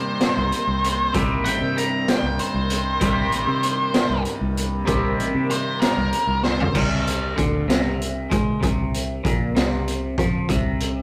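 Swaying in a slow 6/8 at 64 BPM, this mysterious, trippy psychedelic rock excerpt in C minor opens with an up-front octave-fuzz lead guitar soloing until 6.7 s over a scooped, twangy phaser riff guitar, round fingered bass, a buzzing tanpura drone in the background, a very quiet silky string machine, and a gritty, boomy garage drum kit with a high-tuned snare that fills from 6.4 s, all captured in a rough, tube-saturated rehearsal room.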